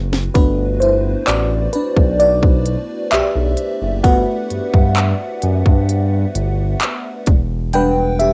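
Smooth and tender, this contemporary R&B passage, cut from a longer piece, sits in a steady, unhurried 4/4 groove. A brief drum fill opens it before the FM electric piano, layered with a soft pad, takes a solo from 0.3 seconds. The piano's tone is lush and dreamy, with a detuned, decaying sound colored by chorus, phaser and plate reverb. Beneath it, a nasal sawtooth synth bass holds sustained notes with vibrato, while a trap kit with a hard-clipped kick, sharp snare, crisp hats and handclaps sits up front, its sound given a cassette-tape grit. The harmony rests on Gmaj7 before shifting to Em7 at 7.3 seconds. The whole recording has the hazy, filtered character of a home cassette recording, with light reverb.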